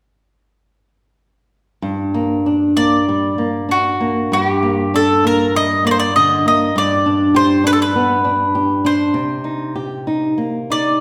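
In a free, rubato 4/4, this mournful, longing fado fragment opens with an up-front, fingerpicked flamenco guitar at 1.8 seconds, its bright tone carrying audible finger squeak, before a woody, double-strung mandolin enters at 2.8 seconds to pick out the melody, both ringing in the generous reverb of a church or concert hall as the chords move from Gm to G and settle on Cm7.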